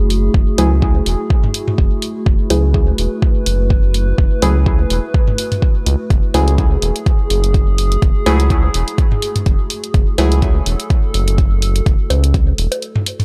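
A round, dark analog bass with transformer saturation and sidechain pumping anchors this meditative, nocturnal dub techno excerpt in 4/4 with swung sixteenths, set against a deep, up-front layered kick and a small-room electronic hi-hat. A warbling, lo-fi tape-like pad holds detuned chords under chorus and its own reverb, while soft, decaying chord stabs with phaser and dub echo enter at 0.6 s alongside overdriven analog bongos and toms that also trail dub echo. The dry, gritty hardware sound closes on a brief break from 12.8 s.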